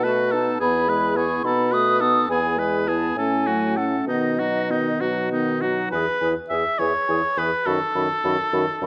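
This excerpt of a wind quintet sits in a moderate recital hall, whose reverb gives the ensemble a gentle glow. It is a quick, cheerful and spirited classical-period movement in 6/8, shaped with a flexible rubato, and all five players sound together from 0.0 to 8.9 seconds. A hollow, pure-toned silver flute carries the melody with crisp attacks and vibrato, set somewhat distant, while an up-front oboe with a smooth top shapes a second line beneath it. A vintage-sounding French horn with soft attacks and a roomy clarinet placed in the background fill in the accompaniment, and a warm bassoon with light vibrato anchors the bass. The harmony moves between B7 and E, touching F#m/A and B before a new section arrives at 5.9 seconds and leans on a rootless B7/F#.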